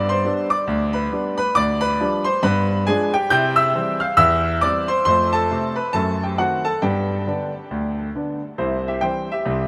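Swinging eighth notes at 137 BPM in 4/4 carry this playful stride-jazz fragment in C major, where a solo concert grand piano, clear and up front with a deep, open bass, moves through G, G7b9, C, F and F#dim7 before settling on C at 8.6 seconds, set in a huge ambient reverb.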